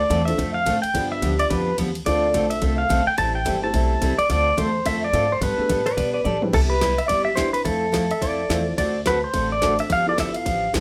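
A brisk 214 BPM swing in 4/4, with eighth notes lilting in a loose shuffle, drives this swinging, playful snippet of western swing cut from a longer country tune. Up front, a twangy, compressed pedal steel guitar carries the melody, played with fingerpicks and sliding into volume swells over a jazzy progression that moves from Dm7 and G7 toward Cmaj9, Fmaj7 and a closing G13. Underneath, a woody pizzicato upright bass anchors the low end while a picked dreadnought acoustic guitar and a vintage upright piano, warm, smooth and intimate with audible action noise, fill in the harmony. The garage drum kit has a produced, layered sound, pairing a tight kick and woody snare with metallic hats, ride, crash and toms, and it throws in a fill at 6.3 seconds. From 5.9 to 9.0 seconds a dark, clean lap steel guitar slides in up front as a second line beside the pedal steel. The band sounds as if it is playing live together in one room, bathed in a short, wet studio reverb.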